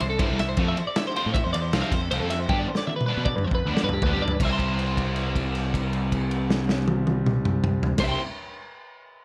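A biting, double-tracked overdriven guitar drives this wistful, bright math rock and midwest emo excerpt with an up-front riff at 157 BPM in 5/4. A clean, compressed twelve-string electric guitar spins bright arpeggios above it, while a round, fuzzy picked bass and a loose, lo-fi indie drum kit with a punchy kick, muffled gritty tone and gated reverb fill out the bottom over C6, Fmaj7 and G7 chords. A drum fill from 2.5 seconds leads into a second section on C at 4.4 seconds, where a held note rings until 8.0 seconds, all framed by light reverb and a bright 1980s-style digital production.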